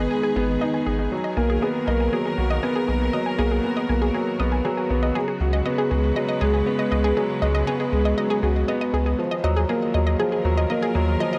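Piano and strings electronica with a melancholic, intimate mood, heard here as a short cut from a longer piece in a straight 4/4 feel. An upright piano sits up front playing a riff, its woody, vintage tone carrying audible action noise and a touch of delay. Beneath it, a round analog bass with a deep, nasal, sine-like body and fast attack holds down the low end, dark and sustained. A detuned unison pluck with a sawtooth edge and a noise layer spins punchy, full-bodied arpeggios through delay, while a clear studio string section holds bowed chords with vibrato and a biting, intense ensemble sound. The harmony moves from G#m through Bmaj7 and C#7sus4 to D#madd9, all set in light reverb and a small room ambience.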